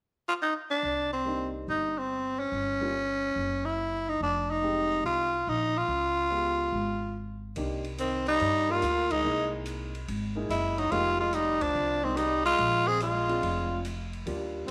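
A raspy, growling tenor saxophone leads this smoky, cool small-group swing and bop excerpt in C minor at 143 BPM, backed by woody pizzicato upright bass and a natural-sounding grand piano, with an open jazz drum kit of dark cymbals and boomy kick joining at 7.6 seconds and a distant, breathy second tenor saxophone with light vibrato and scooped notes entering at 8.0 seconds, set in small-room ambience with moderate echo-chamber reverb.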